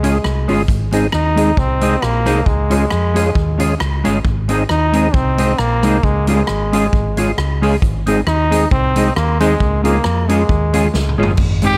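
Vinyl crackle and light reverb frame this upbeat, joyful ska passage, where a brilliant trombone with light vibrato carries the melody through tape echo and plate reverb over a mellow, clean fingered electric guitar, fat, lightly overdriven tonewheel organ stabs with key click and slow rotary speaker sitting in the background, a round, up-front hollow-body bass and a swinging big-room drum kit with a punchy kick, whose fill at 10.9 seconds comes shortly before a bright trumpet note with vibrato at 11.6 seconds.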